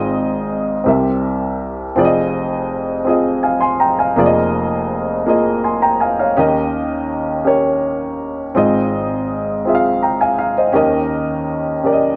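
This is a soulful, jubilant gospel passage in 6/8, cut from a longer piece and played by a lone baby grand piano that sounds warm, natural and up front, ranging from deep bass notes to the upper treble. The harmony moves through rich chords such as Ab6, Fm7, Bb7sus4/F and Eb7, settling back on Ab6 near 8.6 seconds before turning to Eb7 at 10.8 seconds. A moderate echo-chamber reverb gives the piano a roomy glow, and the softened top end keeps the sound mellow.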